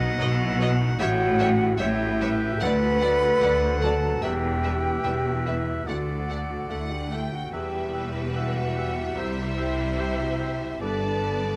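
Cinematic and bittersweet, this short excerpt from a longer piece drifts at a rubato 74 BPM in E minor, carrying a sense of longing over a chord path that moves from B through A7, D and E minor before settling on C and G. A chamber violin section carries the melody with a focused, vibrato-rich tone, while a lush symphonic violin section sits in the background on a second line and a very quiet, intense viola section fills in the accompaniment. Beneath them, bowed cello and double bass sections form a smooth, expressive foundation, and a clear baby grand piano rings with long sustain in the background. Woodwinds add further second lines: a soft-attacked cor anglais and a bright, recessed clarinet from the start, joined at 1.0 seconds by an airy, distant concert flute and a mellow French horn section holding sustained chords. Barely audible timpani mark the opening before falling away at 0.6 seconds. 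Close, detailed microphones and light reverb keep the orchestra intimate yet full.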